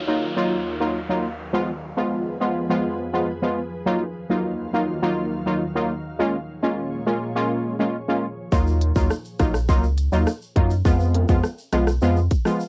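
Bouncy and hypnotic, this dancehall excerpt in Eb minor at 103 BPM opens with punchy, brassy synth stabs and an ethereal, airy pad with sidechain pumping over a brief electronic downlifter, then at 8.5 seconds a round sub bass, a tight, up-front island pop drum kit with crisp hats and rim clicks, and distant tube shaker and timbales join in, all with a cassette-tape home-recording character.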